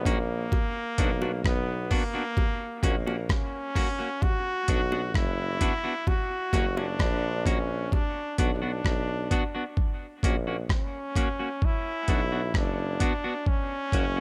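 A forceful, brilliant trombone melody with dub echo and a clear tuba bass with light vibrato open this heavy, spacious dub reggae excerpt at 65 BPM in B harmonic minor, soon joined by a clean, picked hollow-body electric guitar, also treated with dub echo, and a gritty, overdriven sampler-style drum kit with a thumpy kick, hi-hat and rim click up front, while very quiet, tight, high-tuned bongos sit in the small room until 8.1 seconds as the harmony sways between Bm and F#.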